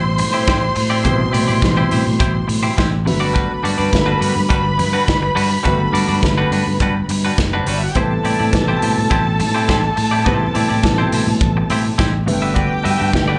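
Danceable and glamorous, this disco groove heard live through a club PA has a dull, roomy sheen, with a punchy fingered electric bass and an up-front soul drum kit with a tight kick entering at 0.2 s beneath a clean, scooped semi-hollow electric guitar and a mellow, dark grand piano, while a lush, woody section of bowed violins with vibrato carries the second line, the guitar, piano and violins sharing plate reverb and slapback echo as the harmony moves between Am7 and Gmaj7.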